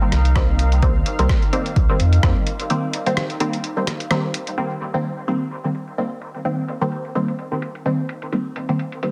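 A hazy, cavernous dub techno excerpt opens on a Cm7 chord, with a muted, detuned dub chord stab steeped in chorus, phaser and dub echo riding over a moody, wave-folded ambient pad with slow attack and reverb, both pumping to the sidechain, as a muffled, pitched-down sampler kit of swung hi-hats and rim clicks joins a punchy overdriven kick and a round sine sub bass that both fall away at 2.3 s, leading into a break at 2.7 s and a filter sweep on the stabs from 4.6 s.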